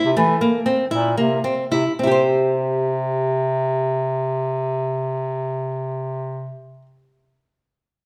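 Set in a straight 7/8 at 218 BPM counted in eighths, this short cut from a longer contemporary chamber piece in C mixolydian slows down over its first 2.0 seconds, moving from a C7 chord to a C5 at 2.0 seconds. A bright, small-bodied nylon-string guitar, fingerpicked and up front, spins shimmering arpeggios, while a clear, vintage-toned bass clarinet carries the bass line in a classical style. A wet recital hall reverb lends the hopeful mood an airy glow.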